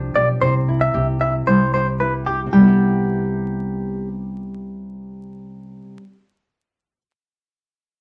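Pop in C major at 113 BPM, carefree and sunny, this short excerpt sets an up-front nylon-string guitar, thumb-plucked and full-bodied with a deep classical tone, over a woody, dark pizzicato upright bass, while a bright, twangy clean electric guitar, recorded direct and compressed, picks arpeggios from 0.2 to 4.1 seconds. The harmony moves from C to Cmaj7 at 2.5 seconds, and the bass drops out at 5.8 seconds before the nylon-string guitar stops at 6.2 seconds. A short studio reverb and a layer of vinyl crackle color the sound.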